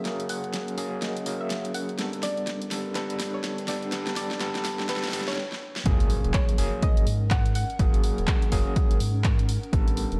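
Deep house at 124 BPM with a hypnotic, warm mood, this clip builds for 5.9 seconds as a filter sweep moves across a gritty, barky electric piano pulsing with fast tremolo, sidechain pumping and dub echo over a deep sub bass, a granular cloud pad, a soft round pluck melody and a deep house drum kit with a fat snare, handclaps and hi-hat, then a drum fill and a stop give way at 5.9 seconds to a drop where a punchy, up-front overdriven kick and a very quiet impact enter, all within a dark production touched by light reverb.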